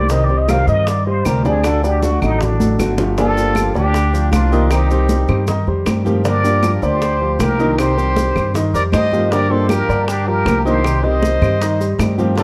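A straight, danceable Cuban son and guajira groove in 4/4 rides on a thumpy, woody gut-string upright bass up front, soft-handed background congas, very quiet high-tuned bongos, vintage-sounding claves and grainy maracas. Over it, a warm fingerpicked archtop guitar with finger squeak and natural baby grand piano arpeggios frame a breathy, whispered plunger-muted trumpet melody with wah-wah, scooped notes and analog delay. The trumpet takes a solo from the start until 3.2 seconds, with a drum fill arriving at 2.6 seconds, before a clear, punchy second trumpet line enters at 3.2 seconds in this nostalgic, lightly reverberant passage.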